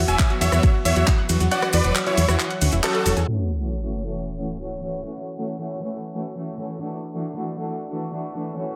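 Driving straight 4/4 at 136 BPM opens this bittersweet uplifting trance excerpt in F# minor, tuned to A4 = 444 Hz, with a punchy, tape-warm electronic kick up front and a layered house drum kit of crash, ride, hi-hat, handclaps and rim click, its hats, snare, cymbals and room darkened by low-pass filtering, while grainy maracas sit in the background. A round, dark FM bass with a fast, decaying attack anchors the drop beside sidechain-pumped parts: a huge, euphoric detuned supersaw lead carrying the melody through digital delay, a bright sawtooth pluck spinning arpeggios with chorus and delay, and an intimate baby grand piano with audible action noise playing a second line in the background. The kick drops out at 1.5 seconds, the band hits an accent at 2.8 seconds, and the chords move from Esus2 to F#m7. At 3.3 seconds most of the arrangement stops and an up-front sub drop marks the impact, while a filter sweep runs over the bowed, vibrato-rich studio strings, which hold sustained low-pass-filtered chords until 8.7 seconds, shifting to Dadd9 along the way. 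Light reverb gives the mix a sense of space.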